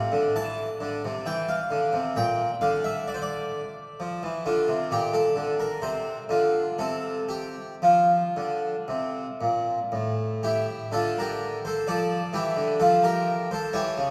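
A long, wet church reverb surrounds this short section of a baroque-style classical suite movement, heard from farther back in the room. A solo French-style harpsichord with three sets of strings sounds brilliant and full, its plucked tone up front, as it spans A2 to A5 in a dance-like, radiant 3/4 at a rubato 55-66 BPM, tuned to A4 = 439 Hz. The music moves through F major chords including a Bbmaj7 before turning to D minor at 10.9 s.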